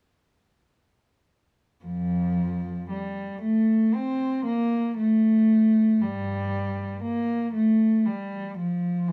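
Flowing rubato in 4/4 carries this radiant excerpt of a baroque-style classical suite movement, where a single dark, woody bowed cello with vibrato plays alone, up front in light reverb, from 1.8 to 9.1 seconds.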